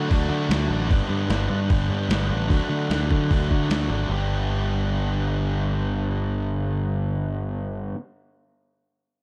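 Carefree and jangly, this short indie rock fragment is led by an up-front, overdriven electric guitar riff over a growling, fingered electric bass with its own overdrive. A bright, distorted guitar with chorus and slapback echo sits in the background only until 0.9 s, while a gritty, pitched-down boom bap sampler-style kit with a thumpy kick and high-tuned snare, re-recorded in a large room, drops out at 3.8 s. The dark, dry production moves between D and G chords, shifting into a new section at 4.1 s.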